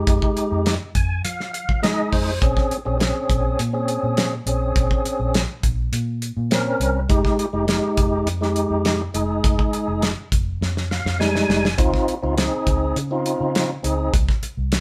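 This straight-eighth soul-blues groove in 4/4 has a smoky, soulful mood and is played by a band playing live together in one room. A damped 70s drum kit sits up front on hi-hat, kick and snare, with a fat snare, a punchy kick and a rolled-off top, and it plays a fill from 10.6 to 11.8 seconds. Beneath it, a vintage muted fingered electric bass has a dark, round, foam-muted, amped tone. The tonewheel organ carries the accompaniment, also up front, lightly overdriven with key click, chorus vibrato and a slow rotary speaker. It plays a fill near the start and another during the drum fill, then stops at 14.1 seconds as the chords pass from Fm7 through Bbm7 to Dbmaj7. Moderate studio reverb gives the room a natural bloom.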